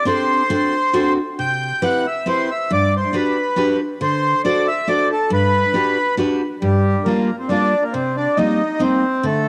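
A reedy, dark accordion leads from the first moment in this bittersweet, whirling musette excerpt in G major, moving at 138 BPM in a straight 3/4 as it carries the melody over chords such as D7, Cmaj7 and Gmaj7. A full-bodied picked steel-string acoustic guitar with a cassette-tape tint enters at 0.1 s to accompany, both parts sitting up front in a small, lightly reverberant room on a home cassette recording. At 6.6 s a new section turns to Gm7 and Cm7 before the fragment breaks off at 9.5 s.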